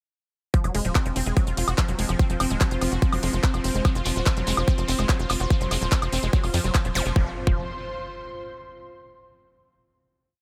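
Alien and intense, this short psychedelic trance piece at 145 BPM drives a punchy four-on-the-floor electronic kick and a nasal, rolling sixteenth-note sequencer bass under a detuned, wave-folded unison pluck whose accented acid line loops in 12 steps against the bar, while a techno drum kit of smooth hats, clap, ride and woodblock, a grainy shekere entering at 3.9 s, a bright, pulsing gated drone, and a breathy, chorused pad of slowly shifting chords carry the drop into a final chord at 7.2 s, marked by a zap and impact.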